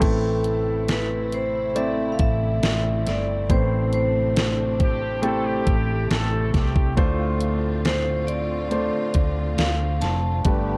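Melancholic and emotional, this slow 69 BPM pop ballad excerpt in A minor moves from Am to Dm7 as an intimate concert grand piano and a round, dark hollow-body electric bass support overdriven, up-front pop drums with a knocking kick and deep snare, while a lush string section sustains chords in the background, a bright, ringing vibraphone carries the melody from 0.9 s, and a distant, nasal muted French horn section adds a second line between 4.8 and 7.6 s, with light studio reverb and a cassette tape character.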